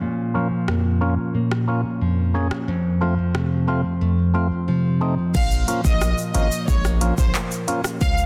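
This dancehall fragment, cut from a longer piece, moves at 90 BPM in a straight 4/4 in Bb minor, with a hypnotic, tough mood as the harmony shifts from Bb minor to F and back. A fat, lightly overdriven tonewheel organ with percussive second-harmonic attack and a stationary speaker opens at 0.0 s alongside a full-bodied, fingerpicked nylon-string guitar, whose deep classical arpeggios are softened by a low-pass filter and trailed by delay. From 0.7 s an electronic, produced afro-pop drum kit sits up front with a deep kick, crisp hats, handclaps, rim clicks, shaker and crash, its tape-warm sound re-recorded in a small room and its snare softly clipped. At 5.3 s the second section brings in a punchy, heavy 808-style bass with a sine body, a noise layer, a fast attack and a decaying tail. A lush, bowed studio violin section enters with it, carrying a smooth, even melody with vibrato, while a compressed egg shaker played with soft hands sits in the background. 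Light reverb surrounds a dense, heavily limited modern master.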